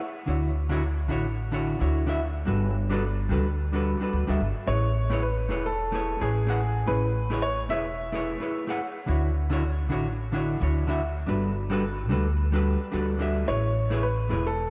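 A woody, thumpy plucked upright bass sits up front in this blissful, sunny sunset chillout excerpt alongside a clean, dark, finger-played hollow-body electric jazz guitar accompanying over major-seventh and ninth chords, while an open-toned baby grand piano with delay carries brief melody phrases from 4.7 to 8.8 seconds and again from 13.5 seconds, the gently swung 16ths bathed in a lush hall reverb and a mellow, shadowy production.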